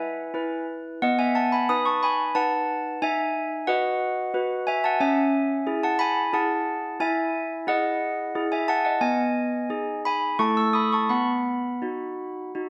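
Solo handbells, clear and ringing with hard clappers, carry this dreamy, innocent classical lullaby in a three-beat metre played with a free, rubato feel across a range from A3 to E6. Sitting up front in a moderate stage reverb within a dark, warm production, the bells drift through harmonies such as an Emaj9 at 7.0 seconds before closing the 12.7-second passage, which is cut from a longer piece.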